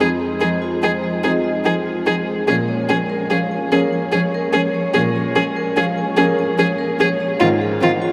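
Drenched in a vast, echoing reverb, this reflective, longing fragment of neoclassical piano and strings drifts in a rubato 6/8 at 49 BPM over Fm7 and Bbm7, with an up-front, intimate violin melody played sul tasto with light vibrato, a pure, floating cello second line, woody, boxy upright piano and very quiet, dark viola in accompaniment, bright, metallic vibraphone arpeggios ringing through tape echo, and a vintage, warbling sawtooth pad with chorus holding sustained chords in the background.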